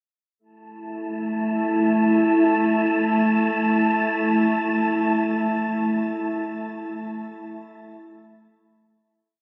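Ambient, spacious and serene, this short piece sets a calm, nasal organ-like drone with ensemble chorus against a breathy, dark, wind-like tuned noise texture holding a high A5, both entering at 0.9 s and sustaining in a lush plate reverb until a fade-out that begins at 5.1 s and closes at 9.4 s.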